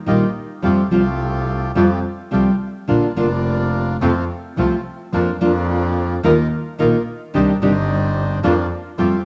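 A rubato 4/4 feel at 107 BPM carries this dramatic, tense tango fragment in Bb major, with full-bodied fingerpicked nylon-string guitar up front leading the accompaniment, a focused bowed double bass with vibrato close behind, and quieter reedy, dry bandoneon stabs, all heard through a lush hall reverb on a home cassette recording.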